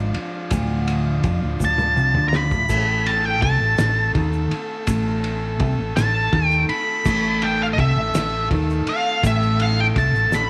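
A buzzy, lightly vibrato-tinged combo organ holds sustained chords under a flanged, double-tracked clean electric guitar riff and a round, overdriven fingered bass as a cloth-damped, muffled drum kit with a fat snare and dark cymbals joins, along with a grainy egg shaker tucked in the background, in this dark, mysterious psychedelic rock excerpt at 55 BPM in 6/8, before an up-front octave-fuzz lead guitar, soaked in wah, distortion and slapback echo, takes a solo from 1.6 s over a drum fill while the harmony moves from D minor to an A power chord at 2.7 s, all in light small-room reverb.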